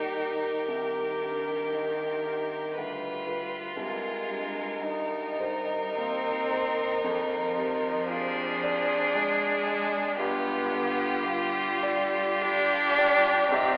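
A serene, slow romantic movement for piano quartet in 3/4 opens with all four players together: a bowed violin carries the smooth, vibrato-laden melody, distant yet up front, while a second violin and a focused cello weave rich supporting lines over a dark, mellow baby grand piano with a vintage character and long sustain. The rubato pulse drifts around 50-60 BPM as the harmony moves from Eb through Cm7 and Dm7b5/F to a closing G7 at 10.2 seconds. A wet church reverb surrounds the ensemble, though the whole sound is narrowed to a thin, telephone-like band, and the passage is cut from a longer piece.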